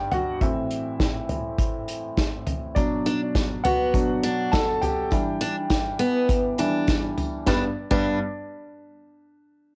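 A clear, present grand piano with long sustain leads this uplifting piano-driven pop excerpt at 102 BPM in G major. Its plate reverb and cassette tape colouring carry a solo passage through Am, Bm and Em7 before it arrives on G at 7.5 seconds. An unplugged drum kit played with bundle sticks sits up front from the start, with a punchy kick, medium-tuned snare and dark cymbals. A jingly tambourine enters distant in the background at 2.8 seconds, and a woody, old-stringed picked steel-string acoustic guitar adds a riff from 3.1 seconds, all with the warm, homespun character of a cassette home recording in a moderate booth ambience.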